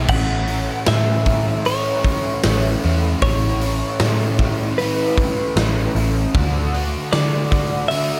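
An overdriven semi-hollow guitar sits up front with a lush chorus, playing a warm, hollow-bodied riff from A2 to F#4 in this hazy, dreamy excerpt of rock, shoegaze and dream pop. The tempo is a straight 77 BPM in 4/4, in A major, with the harmony resting on A before moving to D at 6.3 seconds. Above it, a direct-recorded clean electric guitar carries a bright, twangy, compressed melody between B4 and F#5, trailed by analog delay. A vintage muted picked electric bass supplies a dark, round, foam-muted low end from A1 to D3. A big acoustic rock drum kit, natural and up front, brings crash cymbal, hi-hat, a tight kick and a medium-tuned snare, its cymbals glinting. Light reverb and small room ambience frame the whole 8.2-second passage.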